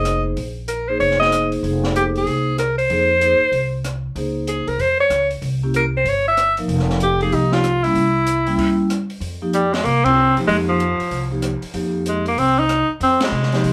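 A clear, punchy alto saxophone leads up front with a forceful tone and vibrato, carrying the melody through this moody, swinging excerpt of small-group swing and bop in 4/4. Ringing, metallic vibraphone played with medium mallets and the motor off comps beneath it, while a woody, growly pizzicato upright bass with steel strings anchors the low end and an open acoustic drum kit with dark cymbals, a high-tuned snare and boomy kick adds crash, hi-hat, ride and rim click from 0.1 seconds. The band plays live together in one room with a wet studio ambience, moving through Fm7, Dbmaj7 and C7b9 changes and hitting accents together at 10.0 and 13.2 seconds.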